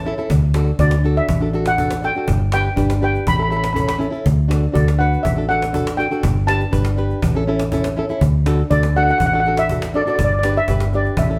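A foam-muted fingered electric bass opens this festive, bouncy calypso excerpt at 0.0 seconds, sitting up front with a direct, amped tone. Fingerpicked acoustic flamenco guitar and a woody cajon, struck with soft hands and carrying faint snares, join almost at once, and a mellow double-seconds steel pan played with soft rubber sticks takes the melody from 0.8 seconds, shimmering and forward in the mix. The band moves at 121 BPM in a straight 4/4 feel in D major, cycling through D, G and A with a Gadd9 colouring the second pass. Recorded live together in one room, the ensemble is wrapped in a wet stone-room reverb that gives the cut a lively, resonant sense of space until it stops at 11.4 seconds.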